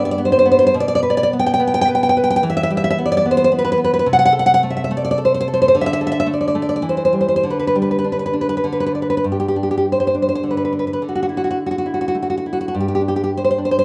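Nostalgic and sunny, this romantic piece for solo classical guitar moves in a rubato 3/4 at around 97-112 BPM in G major, its harmony passing through G, Em and Am/C before settling toward a second section at 9.2 seconds that rests on Dsus2 and G5. The fingerpicked nylon-string guitar sits up front with a deep classical tone, spanning G2 to G5 across the 13.8-second passage cut from a longer work. A moderate recital hall reverb surrounds the instrument with a natural sense of space.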